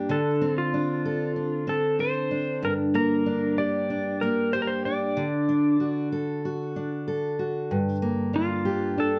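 A fingerpicked steel-string acoustic guitar sits up front with audible finger squeak and an auditorium-like body, and the clean, compressed lap steel joins almost at once with a tender, reflective slide melody and volume swells, together giving this short pop excerpt a dark, warm feel in moderate studio reverb over a Dm7, Gm, D and Gm7 progression.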